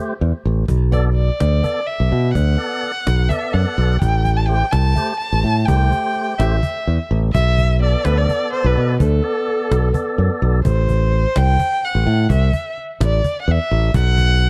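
Brooding and driving, this progressive instrumental piece moves in an uneven 7/8 meter with a straight feel, cut from a longer performance. A lightly overdriven tonewheel organ opens the passage with a fat tone, key click and the churn of a fast rotary speaker, laying down chords that shift between Am7 and Bm7 before it drops out at 10.6 seconds. A bright, growly fingered electric bass sits up front in a direct sound, entering together with a woody cajon whose faint snares give it a close, dry acoustic character. From 0.9 seconds a single bowed violin carries the melody with a soft attack, vibrato and expressive portamento, its tone placed up front in the mix. The production is dark and warm, with little reverb, and the closing bars turn to a bare Am before settling on a B5.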